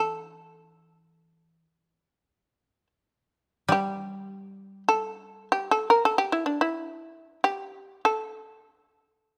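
Calm and austere, this short excerpt of Japanese chamber music unfolds in free time, with the shamisen carrying the melody in a buzzing, percussive voice, its fretless, plectrum-plucked tone sitting up front. Beneath it the koto, played with fingerpicks, gives a dry, woody accompaniment in a low register until it stops at 6.5 seconds, leaving the shamisen alone to 9.4 seconds. Close, detailed microphones and light reverb keep both instruments intimate and clear.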